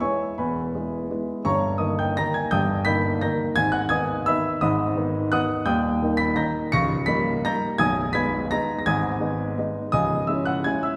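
A solo grand piano opens this brief classical waltz passage, lifted from a longer piece, its polished, up-front tone reaching from the deepest bass to the high treble in a bittersweet, nostalgic mood. The triple-time pulse bends freely with rubato and uneven beats as the harmony drifts from E major through D#-based chords to settle on G# minor before closing on C# minor. A wet recital hall reverb with a 1.8-second tail surrounds the playing, giving it the resonance of a church or concert hall.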